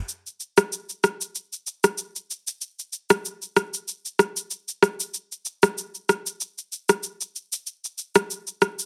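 Romantic and breezy, this short afrobeats excerpt at 95 BPM in 4/4 with a light 16th-note swing features only an electronic shaker and rim click, overdriven and up front, playing from 0.1 to 8.9 seconds in a small room with moderate reverb and a heavily compressed, radio-like sound.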